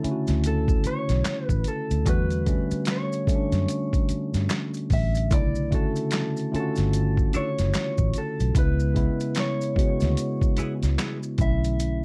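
A gritty, pitched-down boom bap drum kit sits up front with a thumpy kick, medium-tuned snare, hi-hat and handclaps, driving this smooth, sultry neo-soul R&B excerpt at 74 BPM in B minor with a swung sixteenth-note feel. A bright, clean tine electric piano moves through a rootless Bm11, Em11 and C#m7 over a round, foam-muted electric bass, while a slightly broken-up, lo-fi electric guitar carries the melody with slapback echo, and quiet maracas and finger snaps sit in the background. A dark, hollow-body jazz guitar adds a picked second line from 7.3 to 11.2 seconds, all within a dark, warm production with light reverb.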